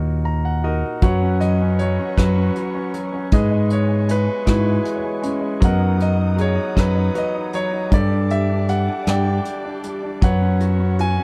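Heartfelt and intimate, this acoustic folk-pop ballad in a straight 6/8 opens with a brilliant concert grand piano fill over a punchy, up-front fingered electric bass, and at 1.0 seconds a soft brush drum kit with tight kick, hi-hat and rim click joins alongside a felt-muted upright piano's mellow arpeggios with audible action noise and a veiled, con sordino string section sustaining dark chords in the background, all in a dry, dark production.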